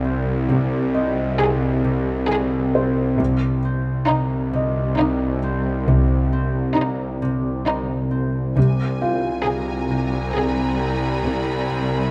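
A lush violin section carries the melody up front, its smooth, even bowing and vibrato giving this mysterious, eerie suspense cue a singing focus in a slow triple metre. Beneath it, a bright, tense bowed-like drone sits on a low sustained note with a slow attack, a sawtooth edge and a noise layer, bathed in its own reverb. A ringing, fingerpicked concert harp repeats a low riff while a soft, felt-muted upright piano adds an intimate, vintage-tinged mellow texture higher up. From 0.5 s a dark, expressive cello section with portamento and a clear, intense double bass section hold the low end in the background. At 8.6 s a second, focused violin section enters with a high texture while the melody is still sounding, and the passage, a fragment of a longer piece, is captured with close, detailed microphones in a moderate concert hall ambience.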